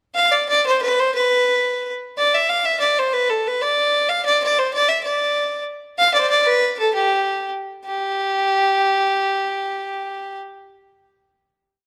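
A clear, biting fiddle plays alone, up front, carrying a modal melody with ornaments, light vibrato and an airy, earthy bow across a festive, ancient-feeling medieval tune in a straight 6/8. The tune speeds up as it goes, arriving at its final note at 7.8 seconds and holding it until 9.6 seconds, making a short complete piece. Close, detailed microphones capture the single player within a moderate scoring-stage reverb.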